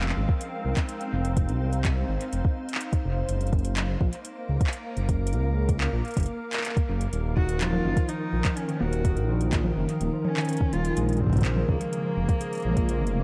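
A deep, rumbling detuned saw bass and a soft, up-front electronic kick anchor this melancholic, glitchy IDM excerpt at 125 BPM in F phrygian, where a glassy, ethereal FM pad with chorus and sidechain pumping holds sustained chords over an overdriven analog drum machine of congas, handclaps and metallic hats, while a ringing concert harp with 12-bit sampler grit and analog delay plays arpeggios briefly until 1.1 seconds, then returns at 7.4 seconds alongside an expressive bowed cello melody full of vibrato and portamento, before the kick drops out at 12.9 seconds.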